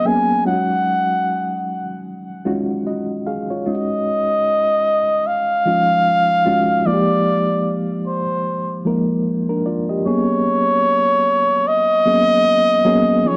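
From the first moment, a breathy, veiled cup-muted trumpet sings a soulful, sultry jazz-style solo with light vibrato over a reedy, worn, slightly out-of-tune electric piano shimmering with fast tremolo through its built-in speakers, both up front in this slow, swung 75 BPM R&B excerpt in Eb minor, set in a wet studio reverb as the harmony moves through Ebm11, Fm11 and Abm11, with a new section arriving at 3.6 seconds.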